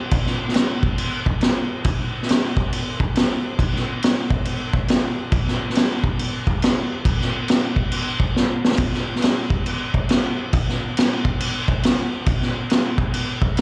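A vintage drum kit kicks in at 0.1 s, setting a raunchy, driving rock groove at 138 BPM in 4/4 with a swung eighth-note feel. The acoustic kit sits up front and mid-forward, with a tight kick, a high-tuned snare and dark crash cymbals under a rolled-off top end. Its sound is saturated and gritty, giving the beat a rough, warm edge. A short drum fill at 8.4 s punctuates the groove before the pattern carries on to the close at 13.6 s. The performance comes across as a live gig heard through the venue's PA, wrapped in a moderate club reverb, and the clip is cut from a longer piece.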